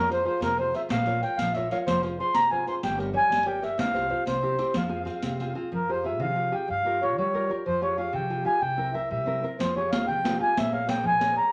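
In a straight 6/8 at 124 BPM (dotted quarters), this Italian folk serenade in F harmonic minor feels passionate and wistful, with a reedy, airy accordion carrying the melody up front over fingerpicked, full-bodied nylon-string guitar, woody pizzicato upright bass and a riq with dark jingles that drops out at 5.5 seconds and returns at 9.6 seconds, all set in a moderate large-studio reverb as the chords move from Fm through Gdim and C7 to close on Bbm7 in this short cut from a longer piece.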